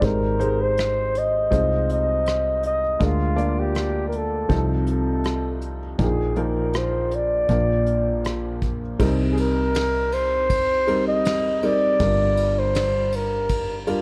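Dressed in a moderate spring reverb and the patina of cassette tape, this heartfelt, intimate acoustic folk-pop ballad moves at 80 BPM in a straight 4/4. A breathy, mellow flugelhorn carries the melody up front in a jazz style, with light vibrato and scooped notes. Beneath it sit an upright piano with a woody tone and audible action noise, a growly, round fretless electric bass, and a soft brush drum kit with a tight kick and medium-tuned snare. The harmony travels from Abmaj7 through Fm7/C and Bb7/D to a Bbsus4 that gives way to Bb, then the second section at 9.0 s moves to Cm7 and Gm7, and the flugelhorn stops at 13.8 s.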